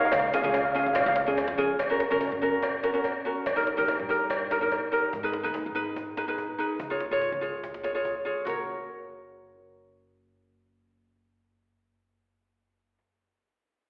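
A shimmering lead steel pan played with medium rubber sticks opens this sunny, carefree calypso excerpt at 144 BPM in F# major, over fingerpicked ukulele with slapback echo, growly pizzicato upright bass and a close, dry cajon with faint snares; the pan drops out at 1.2 s, a distant cowbell with slapback echo adds metallic color until 4.8 s, the cajon stops at 8.6 s, and the recording sounds like a live gig heard through the venue's PA, with recital hall reverb and a telephone-like tone.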